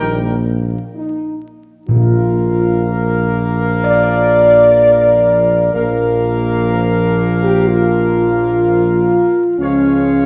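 A classical ceremonial fanfare, triumphant and regal, moving at a stately 62 BPM in a straight 4/4 and cut from a longer piece. A clear trumpet section carries the melody with light vibrato and a slightly loose ensemble feel. Beneath it, a mellow, close-miked French horn section sounds prominently with tight sustained chords, while a present trombone section adds further sustained harmony from the background. An up-front solo tuba anchors the bass with a soft attack and a smooth top, and timpani played with hard mallets sound articulate from 1.9 to 3.3 s as the harmony moves from Eb to Bb, before a turn to Db near 9.6 s. The recording sits in a lush concert hall reverb, with a dark production and vinyl crackle.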